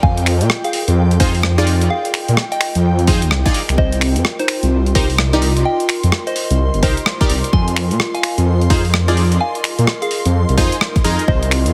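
A heavily compressed, radio-like sound with light reverb frames this bouncy, moody excerpt of two-step UK garage at 128 BPM, its sixteenths swung and its tuning a touch sharp of standard. Up front, a dark, rumbling detuned saw bass beats against itself beneath a punchy, tape-warm electronic kick, while a gritty sampler-style breakbeat kit adds finger snaps, hi-hat and rim click from 0.2 seconds. A soft, pure FM bell carries the melody through chorus, phaser and digital delay, and from 1.2 seconds a bright, detuned chord stab with a filter sweep and moving notch fires off through dub echo. Behind them sit two mellow pads: an ethereal, airy one holding high sustained chords with tremolo and sidechain pumping, and a warbling, nostalgic lo-fi one entering at 0.3 seconds, also pumping. The harmony moves from Fm7 to Cm7 and back to Fm7.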